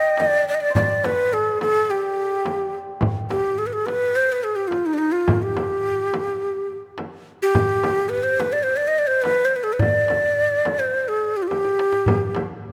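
A straight 4/4 pulse at 106 BPM carries this passionate, stately Persian modal ensemble piece in G dastgah homayun, cut from a longer performance, with a deep, close and dry tombak and a large, vintage, band-limited frame drum entering at 0.2 s and playing a drum fill at 11.5 s. Up front, a breathy end-blown reed-cane ney sings the melody with vibrato and a crisp attack. Behind it, a shimmering, ringing hammered santur plays a second line until 5.0 s, all within a moderate concert hall reverb captured by close, detailed microphones.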